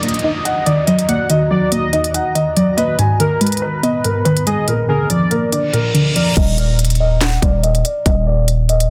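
Dense and heavily limited with light reverb, this melancholic, menacing half-time trap excerpt at 142 BPM in Eb harmonic minor sets a dark, mellow grand piano melody with low-pass filter and tape echo over a warbly, dusty lo-fi pluck, a blurred granular cloud pad in the background, a velvety synth lead with vibrato and chorus as a second line, crisp up-front electronic drums with a hard-clipped kick and sharp snare, and a downlifter and reverse cymbal, before the pluck, pad and lead stop at 6.4 seconds, a growling, buzzy 808-style bass enters on Eb1, and the piano takes a filter sweep.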